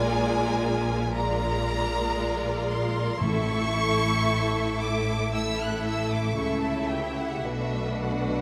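Warm and tender, this brief slow romantic orchestral passage moves with a rubato feel as a lush, up-front violin section sings the melody high above a clear, focused second violin line, clear violas, a smooth cello section set in the background and a rich, expressive double bass section, while a close, dry timpani sounds on A from 3.2 to 4.8 seconds, all in a moderate scoring-stage reverb.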